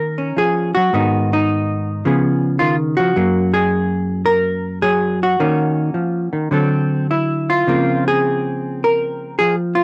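A dark, clean electric hollow-body jazz guitar, fingered and up front, opens at once as a solo jazz performance with a late-night, swinging mood, its loose swing feel bending into rubato. The 9.8-second fragment, cut from a longer piece, moves through Ebm9, Abm7 and Db7 to Gb, then Ebm9, D7 and a closing Db6. The sound carries light reverb and the character of a home cassette recording, tuned slightly below standard pitch.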